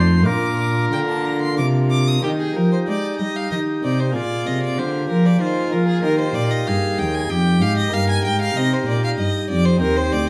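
A baroque-style classical sonata movement with continuo, this short excerpt, cut from a longer piece, moves in a flowing triple metre with a radiant mood. A clear violin carries the melody across a range from G4 to Eb6, its single bowed line smooth and even with vibrato. Beneath it, an oboe plays a second line in a narrower range, its tone clear and punchy in a classical solo style. The chamber organ sits up front with a full principal chorus in chamber voicing, its pipes speaking with a touch of chiff as it supplies the accompaniment. A cello anchors the bass with a soft attack, expressive portamento and vibrato, heard close and sounding the most prominent of the parts. The harmony moves through Bb, Eb, Bb7, Eb and Eb/G, and a stone room reverb with a 1.1-second decay surrounds the ensemble in a resonant space.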